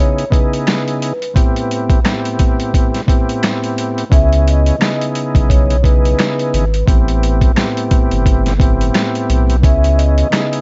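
A gritty, compressed sampler-style drum kit sits up front with a thumpy kick and pitched-down grit, driving this dark, swung boom-bap hip-hop excerpt cut from a longer piece. A smooth tonewheel organ with chorus vibrato and tape character carries the C#m9 and Am9 chords, while a mellow soft-mallet vibraphone rings out a short melody through a digital delay and very quiet, close finger snaps add a human touch. A deep, round dub sub bass enters at 4.1 s, all over a bed of vinyl crackle.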